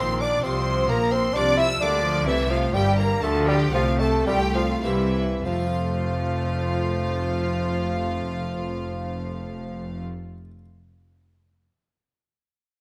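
Classical baroque-style concerto movement in 3/4 and F major, brilliant and festive, moving between 94 and 132 BPM and slowing from 1.6 to 5.5 seconds, where a clear, intense violin section carries the high melody over a warm bassoon line and a soft, sul tasto second violin part, while a smooth viola section and an airy harpsichord with three sets of strings accompany in the background, a focused double bass section and a lush cello section with portamento anchor the bass, and moderate stage reverb surrounds close, detailed microphones in this brief cut from a longer piece.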